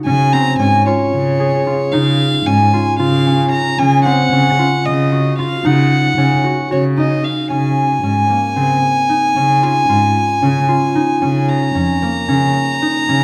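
Contemporary chamber music in 7/8, restless and shimmering, in which a mellow, ringing concert harp fingerpicks arpeggios from the opening moment while a bowed solo violin and a dark solo cello join at 0.1 s. The violin carries a pure, floating melody played sul tasto with a soft attack, and the woody cello supplies a close, up-front bass line with vibrato. A recital hall's reverb surrounds the trio as the passage moves into a new section at 7.5 s, with the recording cut from a longer piece.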